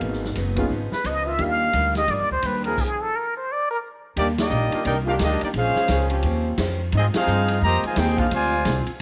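Swinging and energetic, this big band swing excerpt at 174 BPM in Eb major opens with a bright, wah-wah plunger-muted trumpet carrying the melody with scooped notes and slapback echo over a brief, intimate grand piano, a very quiet, boxy picked acoustic guitar, a woody, thumpy upright bass and a punchy drum kit, while a clear trombone section holds sustained chords from 0.6 s; after a stop, a warm trumpet section takes up the melody at 4.2 s, and a trombone section with light vibrato plays a second line in the background, set in light small-room ambience.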